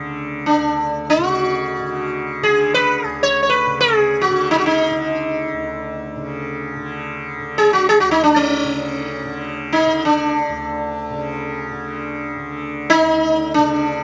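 Hindustani classical music in free time, this radiant, meditative fragment of raga Marwa on D (tuned to A4 = 441 Hz) opens with a bright, softly plucked tanpura drone sounding from D2 to D3 beneath the whole passage, before an up-front, plectrum-plucked sitar enters at 0.5 s, its buzzing tone and shimmering sympathetic strings ranging from C#4 to C#5 in a modest small-room ambience.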